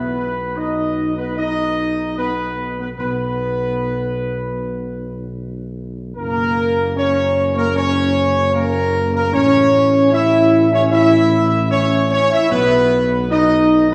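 A regal, triumphant classical brass fragment opens with a dark, soft-attacked trumpet section carrying the melody up front, over sustained chords from a mellow French horn section and a warm, smooth-topped trombone section in the background, while a solo tuba with light vibrato anchors the bass, all set in a roomy scoring-stage reverb heard from further back as the harmony moves from Cb through Gb and A before returning to Cb at 12.5 seconds.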